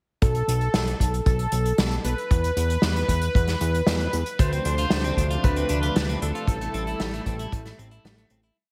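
Nostalgic and cinematic, this short synthwave piece in A minor moves at 115 BPM in a straight 4/4, with a soft, evolving supersaw repeating a riff melody through tape echo over a fat, detuned analog bass driving eighth notes up front and a punchy kick alongside an unplugged kit whose medium-tuned snare and closed hi-hat carry an 80s machine backbeat in gated reverb. At 4.4 seconds a smooth analog pad with chorus settles in the background on sustained chords, while a bright, twangy electric guitar at the edge of break-up picks a four-step arpeggiated sequence through tape echo. The chords move from Asus2/B through E5 and Dm7 to Am7 as the whole piece fades out from 5.8 seconds, all in light studio ambience.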